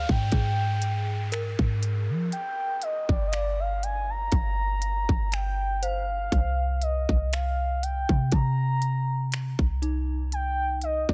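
A slow 60 BPM pulse in 4/4 with a gentle 16th-note swing drives this sensual, longing contemporary R&B fragment in C minor. An up-front electronic trap kit of hard-clipped kick, crisp hi-hats and finger snaps sits over a clean, boomy 808-style bass, while a smooth, detuned portamento lead with chorus and vibrato glides high in the register. An inharmonic FM synth chime rings underneath through ensemble chorus, tremolo and tape echo, and a downlifter ends at 6.3 s as the harmony moves from G7sus4 to Cm7 in a dry, close sound.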